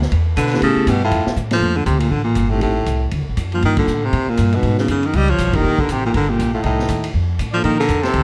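Upright bass and a vintage drum kit open this brief, playful cut of small-group swing and bop at a brisk 239 BPM in Bb major, the woody, thumpy pizzicato bass sitting up front while the kit, with its dark cymbals, punchy kick and rolled-off top, works hi-hat, ride, snare and kick from a small room. At 0.4 s a bright, forceful baritone saxophone takes the melody, close-miked with vibrato and a touch of plate reverb, and a clear trumpet with scooped notes and light vibrato adds a second line in the background. A vibraphone played with soft mallets and the motor off follows, its metallic, ringing tone filling in mellow chords through a progression that moves from a rootless Cmaj9 toward Bbmaj7. A drum fill at 1.4 s leads into the second section, with band accents punctuating the relaxed swing feel, and the trumpet drops away before returning at 5.2 s to join the saxophone to the end. The overall production is dark and warm with light reverb.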